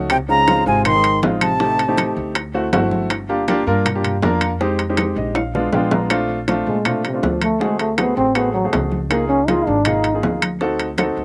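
This danceable, sophisticated Afro-Cuban jazz excerpt at 160 BPM in 4/4 opens with an up-front piano and woody pizzicato upright bass. A crisp, reedy concert flute and a mellow, close-miked trombone state the melody and second line over bongos, claves, bright compressed congas and ringing metal-shell timbales, with the flute dropping out at 2.1 seconds. After a drum fill and piano fill at 5.0 seconds, the trombone returns at 6.7 seconds for a jazz solo with light vibrato over chords such as Bbmaj9, D7#11 and Db69, all in a dry, open-air sound.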